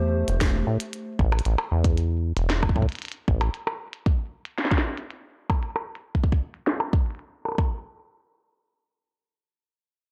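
Melancholic and cerebral, this short IDM excerpt in A minor at 115 BPM opens on an Am7 chord from a warbling, detuned, lo-fi pad with chorus and its own reverb that ends at 1.4 seconds, while a rubbery, saturated acid bass with a resonant filter sweep plays until 3.5 seconds, and a deep electronic kick and a glitchy kit of clicky hats, tiny snare and percussion blips, the kit filtered and swept, carry on up front to 7.7 seconds in a dry, gritty hardware sound.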